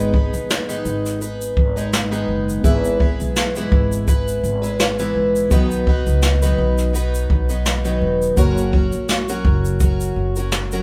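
A shimmering, octave-doubled plugged-in twelve-string acoustic guitar strums out the accompaniment in this tender, wistful acoustic pop passage, its boxy parlour tone sitting up front with audible finger squeaks as it moves through G#m, E/G#, B and F#. Alongside it, an up-front jazz brush kit with a punchy kick, medium-tuned snare and shaker sets a lightly swung feel, while a woody, growly pizzicato upright bass anchors the low end. A reedy, worn electric piano, slightly out of tune and lightly overdriven with a fast tremolo, sits in the background of this band playing live together in one room with light reverb.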